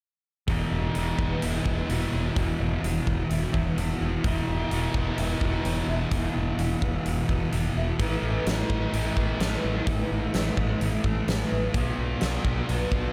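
A straight 4/4 pulse comes from a huge arena drum kit, with a punchy kick, fat snare and hi-hat ringing in a big, natural-sounding room, as this dreamy, hazy slice of shoegaze and dream pop rock gets under way at 0.5 seconds. Underneath, a deep dub fingered electric bass holds the low end with a dark, round tone. Up front, a thick fuzz guitar grinds out a distorted riff coated in lush chorus, while a biting overdriven guitar plays its own riff with a reverse reverb haze. Set back in the mix, a picked twelve-string acoustic guitar spins shimmering, octave-doubled arpeggios with a woody, boxy character and old strings, treated with analog chorus and digital delay. The harmony rests on Eadd9 before shifting to Asus2 at 8.0 seconds and B at 11.8 seconds, and light reverb wraps the whole fragment of a longer piece.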